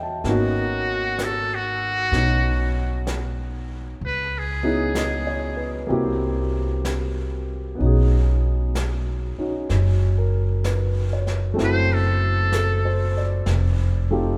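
A slow swing at 64 BPM in 4/4, with eighth notes swung at 67%, carries this romantic, intimate jazz ballad in B major, cut from a longer piece. The upright bass sits up front with a woody, pizzicato tone on steel strings. A vintage brush drum kit enters at 0.2 seconds with brushed snare and hi-hat, mid-forward and soft at the top, as though heard in a small room. The baby grand piano accompanies with a warm, natural sound, close enough that its action noise can be heard. Over this, a trumpet with a metal mute plays a buzzy, thin, brilliant solo with vibrato and a forceful, punchy attack, first from 0.3 to 5.8 seconds and again from 11.6 seconds. The harmony moves through lush extended chords such as G#m11, C7#11 and B69, all set in the long, moderate reverb of a church or concert hall.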